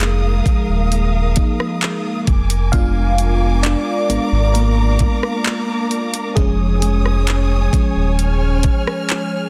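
Opening together at 0.0 s, a dreamy, detuned FM electric piano with a soft pad layer and chorus takes the solo in this sensual, longing contemporary R&B fragment at 66 BPM in 4/4, over bowed studio strings with vibrato holding lush sustained chords, a deep sine sub bass with octave that stops at 8.7 s, and an up-front, tape-warm electronic drum kit of knocking kick, warm hi-hat, handclaps and rim click, heard in a digital ambience with a dense, heavily limited modern master as the harmony moves from Ebsus24 to Bb7b9/F to Eb7sus4.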